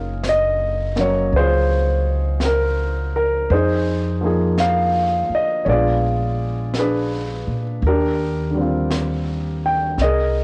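A grand piano with audible action noise and a woody, thumpy pizzicato upright bass, both up front, open this tender, intimate jazz ballad in Eb major at a slow, swung 56 BPM; brushes on a high-tuned snare and hi-hat enter at 0.2 s from a small-room kit with a rolled-off top that sits low in the mix, while the piano and drums carry a cassette-tape grain and the bass a touch of tube saturation, under light reverb in a home cassette recording that moves from Gbmaj9 through Fm7 and Bb7b9 to Ebmaj9 in this brief fragment of a longer piece.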